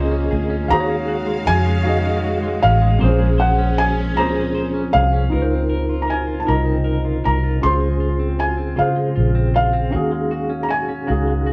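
A dark, foam-muted fingered electric bass sits up front in this sultry, yearning R&B excerpt in Bb minor, moving slowly at 52 BPM in a straight 6/8, while a soft felt-muted upright piano carries the intimate, short-sustained melody high above. A clean tine electric piano supplies up-front accompaniment through chords like Bbm9, Ebm11 and Dbmaj13, and a bright, compressed semi-hollow guitar adds a quieter second line with tremolo. A distant, lush bowed string section holds sustained chords until 5.3 seconds, and the band plays together in one room with light reverb.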